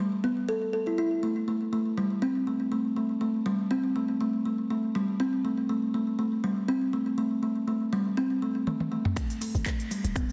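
A woody, boxy kalimba opens this driving, spiritual afro house passage at 121 BPM with a light swing, playing arpeggios around G that carry a vintage 12-bit sampler grit, delay and sidechain pumping. A drum fill of finger snaps, handclaps, crisp hi-hats, shaker and toms, dulled by low-pass filtering, enters at 8.7 seconds. The drop follows at 9.2 seconds with a punchy, layered electronic kick, and at 9.5 seconds a deep, boomy 808-style sine bass joins with sidechain pumping, all set in a moderate stage reverb and a dense, heavily limited master.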